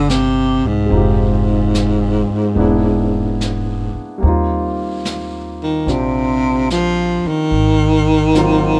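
A mellow, close-miked baritone saxophone sits up front with vibrato, subtone and scooped notes in this tender, late-night swung jazz ballad excerpt, carried by a clear concert grand piano with deep bass and long sustain, a woody, thumpy pizzicato upright bass on gut strings, and a quiet small-room brush kit of snare and hi-hat that joins at 0.1 seconds, the whole set in light reverb.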